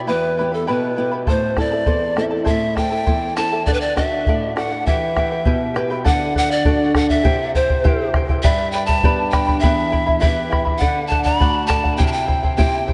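A breathy, reedy bamboo pan flute carries the melody up front, its tongued notes marked by chiff and vibrato and trailed by tape echo, in this earthy, melancholic Andean folk excerpt at 101 BPM in a straight 2/4. Beneath it, a fingerpicked charango adds a shimmering layer from its double strings, some doubled at the octave, while a fingerpicked flamenco guitar supplies lower accompaniment coloured by lush chorus and the occasional finger squeak. The round, acoustic bombo enters at 1.3 seconds and sits prominently in the mix. The harmony moves from E minor through A minor and D, then shifts at 6.1 seconds into a second section that cycles through D, C, G and E minor. The whole ensemble is bathed in a lush hall reverb and a dreamy, soft-topped sound with the highest frequencies rolled off.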